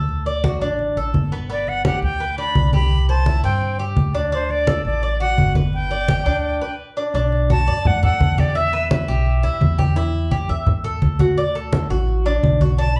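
A straight 4/4 pulse at 170 BPM drives this relaxed, sunny slice of Cuban son and guajira, where low-tuned congas struck with hard hands and a thumpy, woody pizzicato upright bass underpin a picked tres with metallic double strings spinning arpeggios, while an airy, reedy flute with vibrato sits up front carrying the melody from 1.5 to 9.8 seconds, all heard from further back in a large studio with wet reverb, through a short break at 6.4 seconds and chords moving from D and G to Bm7, Em and back to D.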